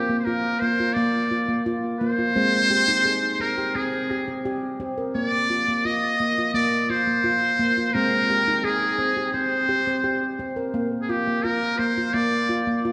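A muted trumpet with a buzzy, thin edge carries the melody from the start in a forceful, jazz-inflected solo voice, with scooped notes, light vibrato and analog delay. Beneath it, a ringing, bright handpan plays arpeggios with sharp finger strokes, also touched by analog delay, over chords moving between Bb and Ab. This gentle, meditative world piece moves at 86 BPM in a straight 4/4 and is bathed in a wet echo-chamber reverb, cut from a longer work and ending at 12.9 seconds.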